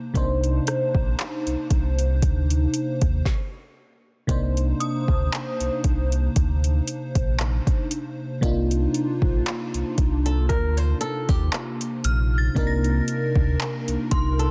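A longing, late-night contemporary R&B excerpt, built on a lush, dreamy FM electric piano with a soft pad layer, its detuned, mellow tone shimmering with chorus and phaser over a deep sine sub bass and an up-front smooth R&B kit of soft kick, woody snare, metallic hats, rim clicks and handclaps with a tape-warm, lightly swung feel. After a brief stop at 3.3 seconds, the groove returns around a single Cm9 chord, and an inharmonic, ringing synth chime drifts in high above at 4.8 seconds with ensemble chorus and delay. At 10.3 seconds a boxy, fingerpicked flamenco guitar adds delayed arpeggios with audible finger squeak, all within a dense, heavily limited modern master and digital ambience.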